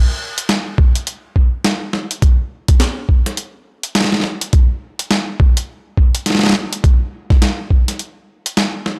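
A dry, gritty hardware recording opens this swaggering, funky glitch hop excerpt at 104 BPM in 4/4 with a 61% swing on the 16ths, where a compressed, sampler-style boom bap kit of hi-hat and medium-tuned snare runs from 0.4 to 9.0 seconds up front alongside a thumpy electronic kick drum from 0.8 to 7.8 seconds, both re-recorded in a large room.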